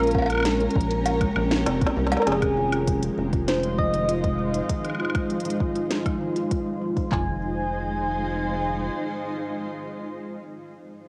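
This eerie, cerebral IDM excerpt opens with everything arriving at once: a round, gentle FM lead picks out a melody through chorus and tape echo over a cloudy, detuned granular pad that carries 12-bit sampler grit and sidechain pumping. Beneath them, a kalimba plays woody, fingertip-plucked arpeggios softened by a low-pass filter and echo, while a rubbery, hollow square-wave bass bounces along the low end. Two overdriven electronic drum kits, coloured by studio reverb and cassette tape, supply a deep kick, handclaps, toms, a woody snare, smooth hats, cowbell and woodblock, and a drum fill at 1.7 seconds leads into a filter sweep on the pad starting at 2.3 seconds as the harmony shifts from B-flat minor to F minor seventh. The drums drop out around 7.1 seconds, and the kalimba and bass soon follow, leaving the lead and the blurred pad to carry on until the cut. A moderate spring reverb and the hazy feel of a home cassette recording give the whole piece an intimate, slightly worn sound.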